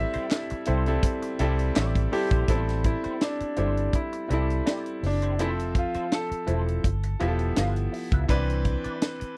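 Lightly swung sixteenths drive this silky, cinematic 1970s-style soul excerpt, where a tight funk drum kit with a high-tuned snare and a round, foam-muted vintage fingered bass sit up front beneath a clear concert grand piano melody and a natural grand piano accompaniment that adds a fill from 1.4 to 2.5 seconds, while a slightly broken-up wah guitar riff through a small old amp and crisp, band-limited group handclaps sit in the background of a dry, close studio sound moving from Am7 through Fmaj7 and G13 to Cmaj9.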